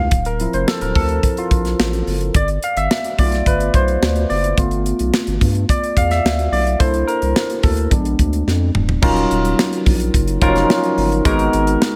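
Polished 1980s jazz-funk pop at 108 BPM, slick and bittersweet, this short cut from a longer piece features a barky, lightly overdriven tine electric piano soloing up front through lush chorus until 9.0 seconds over a deep, saturated sine sub bass and a tight, dry funk kit with gated reverb, whose drum fill at 8.5 seconds precedes the shift in the chords from Dm7 and G9 toward Ebm9 and Abm9.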